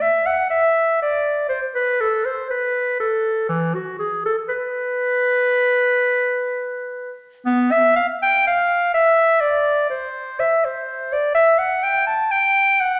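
Radiant and dance-like, this baroque-style classical fantasia for unaccompanied clarinet moves in a free, rubato 4/4 across 13 seconds cut from a longer piece. The mellow clarinet sits up front as the sole voice, ranging from E3 to A5. A wet recital-hall reverb with a 1.3-second decay surrounds it, and the sound holds nothing above 10.7 kHz.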